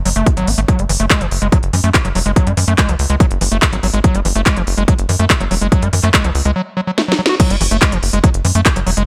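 A straight, driving 4/4 at 143 BPM anchors this psychedelic, alien psychedelic trance excerpt in F# minor, where a heavy, up-front electronic kick and a techno drum kit with cracking snare, smooth hi-hats, handclaps and crash cymbal, both tape-toned from a small room, push beneath a tight, punchy sawtooth-and-square sequencer bass with a plucked filter and moving notch, while an overdriven acid bass riff squelches with resonant, gritty filter sweeps, distortion, sidechain pumping and tape echo, all nearly dry, until a break at 6.6 seconds and a drum fill lead into a band accent and the drop at 7.4 seconds.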